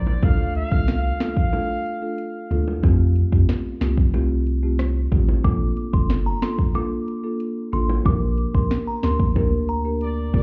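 A straight, bouncy dancehall groove in 4/4 rides on an up-front electronic drum kit with a deep kick, sharp snare and metallic hats, while a punchy sine sub bass with a pitch-drop attack anchors the bottom and low-tuned acoustic bongos sit back in the mix. Soft-mallet marimba, woody and mellow with a sidechain pump, carries the summery Dm, Fadd9, Bbmaj7 and Gm/Bb changes, and a tight, clear horn section with tape echo opens the cut before returning at 10.0 seconds. From 5.4 seconds a glassy, crystalline FM synth bell with chorus, tremolo and tape echo adds a warbling vintage melody, all heard muffled as if through a club wall.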